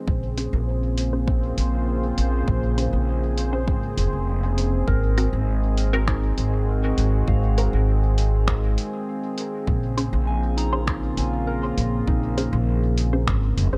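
A warbling, detuned analog pad and a bubbling, resonant stepped-filter texture open this hazy, spacious ambient dub piece at 100 BPM, soon joined by a woody, thumpy pizzicato upright bass up front, a deep overdriven electronic kick, a muffled, pitched-down lo-fi sampler-style kit of finger snaps and hi-hat, and a muted filtered chord stab with phaser, cassette tape and dub echo, before a pure FM synth bell arpeggio enters at 4.9 s over a Bbm9 to Ab7 and back to Bbm9 progression in a dark, dry mix.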